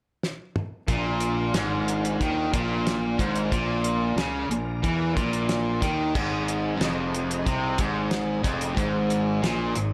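Driving and swaggering, this classic rock excerpt moves at 91 BPM in Bb mixolydian, opening with a drum fill from a cloth-damped, thuddy kit with a fat snare, tight kick and dark cymbals before the band crashes in at 0.9 seconds on Bb, shifting to Ab5 at 6.1 seconds. Two overdriven guitars play the riff in the low register, one biting and set back in the mix, the other bright, up front and touched with spring reverb, while a growly, punchy fuzz bass anchors the low end underneath. A very quiet tonewheel organ holds full, lightly overdriven chords through a slow rotary speaker, all in a light reverb.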